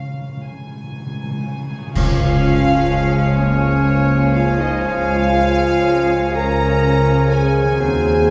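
A serene, tender slow romantic movement for symphony orchestra in Db major, in 12/8 at 38-43 BPM with a rubato feel, opens with the string sections and a timpani fill on Db3. Floating, sul tasto violins carry the melody over a second violin line in the background, a very quiet, woody viola section with vibrato, a rich cello section and an intimate, close double bass section. A ringing, very quiet harp enters with arpeggios at 1.8 seconds, and at 2.0 seconds the winds and brass arrive with a band accent, as the cymbals and concert bass drum sound briefly, close and dry. An airy flute, a bright clarinet, a cor anglais with a smooth top and a mellow bassoon add their lines, while a dark French horn section holds sustained chords as the most prominent part, with a tuba underneath in the background. Heard from further back in a reverberant concert hall, this passage from a longer piece arrives at an Ab7 over Eb chord.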